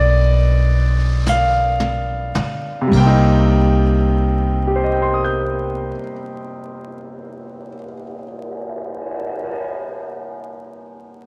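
A slow, swung jazz ballad fragment, intimate and wistful, carried by a brilliant, up-front grand piano over a woody pizzicato upright bass that drops out at 5.9 seconds. A distant, roomy brushed drum kit with dark cymbals and a boomy kick enters at 1.3 seconds with a fill while the tempo slows, before the harmony settles from G7 onto Cm7. Echo-chamber reverb and a layer of vinyl crackle give the recording an old-record atmosphere.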